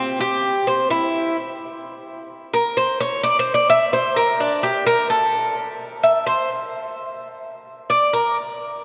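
Relaxed and danceable, this short Latin excerpt at 129 BPM in a straight 4/4 features a solo Cuban tres, bright and metallic with picked double strings, some doubled at the octave, sitting up front between C4 and E5 and ringing into a vast, echoing cathedral reverb until it stops at 8.4 seconds.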